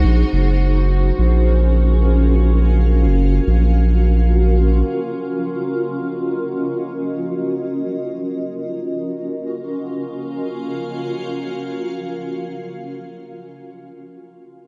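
IDM in free time and Gb lydian, this wistful, intricate excerpt opens on a Gbmaj7 chord, with a cloudy, granular pad holding sustained chords through 12.5 seconds, its blurred, detuned unison tone evolving under a moving notch, a slow attack and built-in reverb, while a filter sweep runs across it from 0.3 to 9.5 seconds. Beneath it, a round analog bass sits up front with a deep, dark sine-and-triangle tone and fast attack, sustaining low notes until it stops at 4.8 seconds. Light studio reverb gives the sound a soft sense of space.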